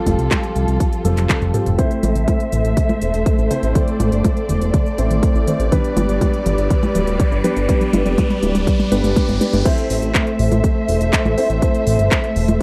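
A dry, close 1970s-style studio sound with a touch of digital ambience frames this nostalgic, bittersweet italo disco clip, cut from a longer piece, where lush, woody bowed strings hold sustained chords up front beside mellow, dark grand piano stabs that carry audible action noise and tape echo. A fat, detuned sawtooth-and-square analog bass with a moving notch sits forward with a punchy, layered electronic kick, while a house kit of crisp hi-hats, handclaps, congas, cabasa, toms and crash cymbal adds studio reverb and a drum fill. The harmony moves from Fadd9 to Am, G and back to Am, as an electronic riser builds faintly underneath from 4.6 to 9.7 seconds.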